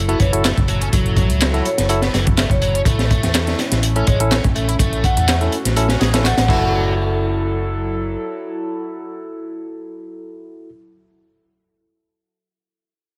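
A crunchy, gritty breakbeat kit with dark cymbals, a high-tuned snare and punchy kick drives this energetic, funky 124 BPM breakbeat excerpt in F# minor, joined by an overdriven analog drum machine's handclaps and hi-hat, a round, hollow-body fingered bass with tube saturation, a biting double-tracked guitar riff and barky tine electric piano stabs both roughened by 12-bit sampler grit and dub echo, a metallic vibraphone melody through a small speaker in the background, and a warbling, nostalgic tape-like pad with chorus, phaser and sidechain pumping that carries on with the piano after the drums drop out around 6.6 seconds.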